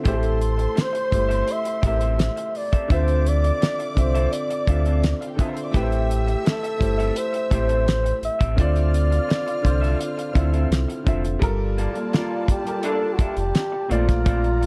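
Bittersweet and cinematic, this short cut of lush 1970s-style soul sets a breathy, scooped flugelhorn melody over a clear grand piano with audible action noise, a slightly broken-up electric guitar riff in the background, bowed strings with portamento, a deep sine sub bass and a damped drum kit with a fat snare, all in dark studio reverb, while a tight horn section adds brief stabs at 12.8 seconds, after the harmony shifts at 11.4 seconds.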